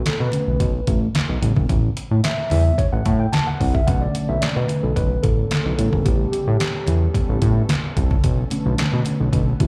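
Early-eighties boogie funk with a slick, funky mood, cut from a longer piece, where a mellow tine electric piano with slapback echo solos over Bm9 and A9 chords, backed by a fat, detuned sawtooth analog bass up front, a thumpy, overdriven 8-bit drum machine with handclaps, hi-hat and snare, very quiet bright congas, and a smooth, warbling analog pad with subtle chorus that enters in the background at 3.9 seconds, all heard as a live gig through the venue's PA with club reverb.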